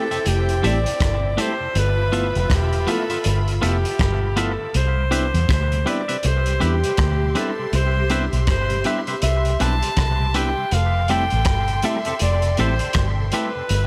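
A bright, punchy alto saxophone leads this tender lovers rock reggae passage, carrying the romantic melody up front with vibrato and a touch of tape echo, while a lush bowed string section shadows it with a smooth second line. Beneath them, a mellow tine electric piano sits in the background and a twangy, clean electric guitar adds compressed picked stabs washed in spring reverb and dub echo. A very quiet tonewheel organ with key click and chorus vibrato slips in at 0.1 seconds alongside a crunchy breakbeat kit of hi-hat, tight kick and rim click, its gritty, saturated tone dressed in gated reverb and dub echo. The dark, round fingered bass arrives at 0.3 seconds, foam-muted and sitting prominently in the mix. The harmony drifts through Fmaj9, G13 and a long stretch of Cmaj7 before returning to Fmaj9 in this short cut from a longer piece, all in a dry room with a lazy swung feel.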